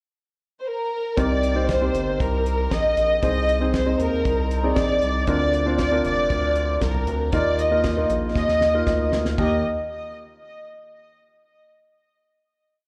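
Heard as a live gig through the venue's PA, with club reverb, light reverb and a studio ambience, this uplifting, anthemic piano-driven pop piece in Eb major moves at 117 BPM. A lush, vibrato-rich violin section opens the pickup at 0.6 seconds with a motif-based melody touched by slapback echo and digital delay; at 1.2 seconds the intimate concert grand joins with syncopated, closely voiced chords, its action noise audible under slapback echo, alongside a round, sustained analog bass line and a damped 70s kit with a fat snare and dark cymbals stomping out a four-on-the-floor beat. The verse moves through Cm7, Ab/C, Bbadd9 and Ebsus2, and a drum fill at 8.4 seconds leads into a final Eb chord.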